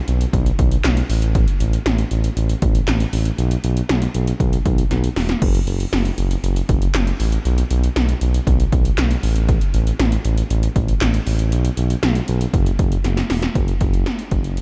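A smooth, mellow synth bass built from sawtooth and triangle tones sits up front with a fast attack and sustained notes, holding low in the E1 to B1 range at 118 BPM. Eighties electronic pad drums drive this cool, nocturnal synth-pop excerpt, with a punchy kick, gated snare, metallic hi-hats and handclaps in a short room, plus crash cymbal, all with a tape-warm analog character. Drum fills arrive at 4.9 and 13.0 seconds, the second leading into a new section at 13.6 seconds, all set in light reverb and digital ambience.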